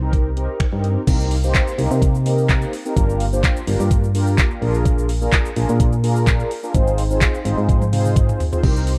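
A confident, driving dance-pop excerpt opens on mellow synth brass, detuned and dark with chorus, phaser and sidechain pumping, beside a punchy, round FM bass that also pumps up front. A smooth R&B drum kit enters at 0.1 seconds with a knocking kick, metallic hi-hats, finger snaps, handclaps, shaker, crash and toms, and plays a drum fill at 7.7 seconds. The chords move from Cm7 through Gm7 and Bb7 to Fm7/Ab, inside a digital ambience with a worn, warbling cassette-tape pitch drift.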